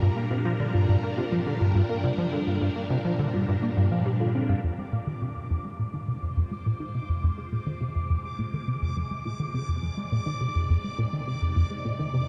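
Ambient, sequencer-driven space music in F dorian at 104 BPM in a straight 4/4, this short excerpt from a longer piece feels cosmic and mysterious. A punchy, funky analog bass sits up front with a plucky riff from F2 to Bb3, its wave-folded tone carrying ensemble chorus and tape echo, and a filter sweep runs across it from 4.6 seconds to the end. Above it, a swirling, vintage string machine holds sustained chords through phaser and ensemble chorus, fading in over the second half. A round, tine-like synth pluck resembling a thumb piano plays gentle arpeggios with chorus and tape echo until 4.6 seconds, when a bubbling, resonant filter texture takes over high on D6, stepping randomly and trailing a long release into its own reverb. The harmony moves from Gm to Fm at that point, and the whole production is dark and steeped in a huge, wet ambient reverb with a 7.2-second decay.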